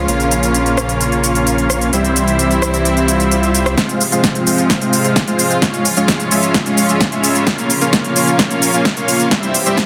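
A huge, airy supersaw riff leads this euphoric festival progressive house cut at 130 BPM in F harmonic minor, its thick detuned unison tone roughened by vintage 12-bit sampler grit, filtered, echoed in dub style and pumping against the beat, with a filter sweep on it from 3.8 seconds. Beneath it a reedy, gut-string chamber ensemble sustains chords, while a lush, chorused saw bass holds the low end until a very quiet downlifter and swell at 3.1 seconds hands over to a build-up at 3.8 seconds. There an overdriven, punchy electronic kick joins the crisp, up-front big-room kit with its snare, rim clicks, shaker and a drum fill, all over a Bbm–C–Fm–Db progression in a dense, heavily limited mix.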